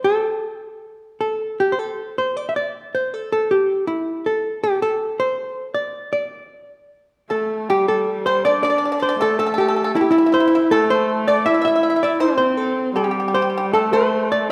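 Chinese traditional music for a chamber ensemble, this graceful, festive passage is cut from a longer piece and moves in a rubato 2/4 at around 79 BPM, tuned slightly below standard pitch with A4 at 437 Hz. A clean, picked hollow-body electric jazz guitar carries the melody alone from the start, its dark tone placed up front. At 7.3 seconds two second lines join it. One is a husky, earthy horsehead fiddle, bowed by a single player on horsehair strings with light vibrato and portamento, sitting close in the lower register. The other is an acoustic pipa played with fingerpicks, dry and percussive in the same upper range as the guitar. All three parts play through to 14.5 seconds, held together by a wet scoring-stage reverb and a dark, warm production.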